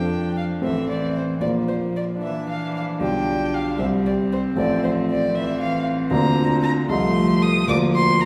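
A lilting six-eight pulse moves with a supple rubato through this brief, spirited and cheerful classical-period movement for piano quartet, taken at a quick pace and cut from a longer piece. A single bowed violin carries the melody up front, its dark, woody tone played sul tasto with vibrato and placed close. Beneath it, one cello plays a second line, intimate and airy-bowed, with light vibrato and a soft attack. A single viola fills out the accompaniment with a pure, floating sound and a smooth top, also bowed sul tasto, while the polished, present grand piano sits up front and spans a broad range of the keyboard. All four parts play together for the full 8.3 seconds, over a harmony that moves briskly through changes such as Am, G7/B and F7/C, and the ensemble is heard from further back in a wet recital hall with a reverb tail of 1.7 seconds.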